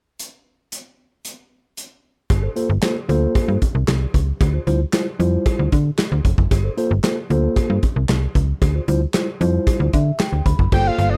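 A late-night, funky slice of early-eighties boogie funk opens with a punchy, up-front studio drum kit of kick, snare, hi-hat, handclaps and crash in a pumping room, before a snappy FM slap bass with a metallic attack, a distant cowbell and a mellow tine electric piano join at 2.3 seconds over alternating Gm11 and Dm11 chords. The electric piano plays a fill at 9.7 seconds, and at 10.7 seconds a fat, nasal analog lead with chorus, vibrato and slapback echo enters just as the clip is cut off from the longer piece. The mix is dry and close.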